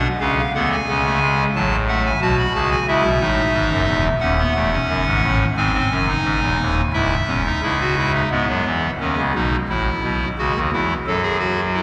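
Bathed in a long, wet cathedral reverb, this elegant, stately excerpt of a baroque-style three-part fugue at 88 BPM in 4/4 features a solo pipe organ on a hollow, up-front clarinet reed stop with audible chiff and baroque voicing, ranging from C#1 to B5 and tuned to A4 = 439 Hz, as it moves through minor-key harmony such as C#m and G#7 before turning toward Emaj7 and A at 8.3 seconds until the cut at 11.8 seconds.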